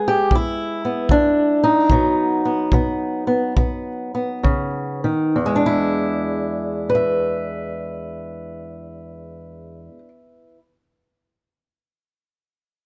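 A fingerpicked acoustic guitar opens this short cut from a longer piece of country blues, its boxy, up-front tone set in plate reverb as it carries the melody in a swung 4/4 around E mixolydian. A punchy acoustic kick drum with a brushed, small-room character joins at 0.3 seconds and drops out at 4.7 seconds. The tempo sits between 65 and 78 BPM and slows through the opening 5.4 seconds while the harmony moves from E7 to B. At 5.4 seconds the music turns to a new passage back on E7, with the guitar carrying on alone until it ends at 10.6 seconds. The mood is gritty and rollicking, and a moderate small-room ambience surrounds the sound.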